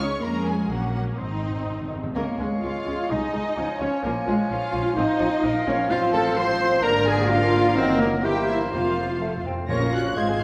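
Heard through a moderate concert-hall reverb, this dramatic, urgent fragment of a quick classical-period orchestral movement opens with veiled, con sordino violins carrying the melody and a second line over muted violas, lush cellos and distant double basses, with hard-mallet timpani entering at 1.2 seconds, before a bright clarinet, clear oboe, airy hollow flute, very quiet bassoon and a dark French horn section holding sustained chords join from about 2.2 seconds.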